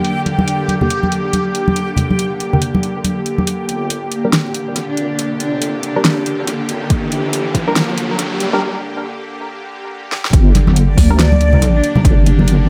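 A half-time 4/4 pulse at 140 BPM, swung on the sixteenths, drives this dark, heavy deep dubstep fragment in G phrygian, cut from a longer piece and built on a G minor chord. A tense, string-like drone sustains chords throughout, while overdriven deep house drums supply a fat snare and metallic hats through dub echo, and soft-handed congas with a thick skin sound from 0.3 s. A reversed, dreamy swelling texture and a muted, sawtooth dub chord stab tucked in the background fill out the harmony. From 3.5 s a deep, detuned wobble bass takes over the low end as the build-up begins. At 4.1 s a woody, close cello sings with vibrato through a filter sweep, and from 4.9 s an electronic riser climbs until the break at 8.6 s. After a drum fill, the drop at 10.3 s brings back the punchy, layered electronic kick, first heard briefly at 6.9 s, with the congas, cello and reversed texture returning over an echo-heavy digital ambience.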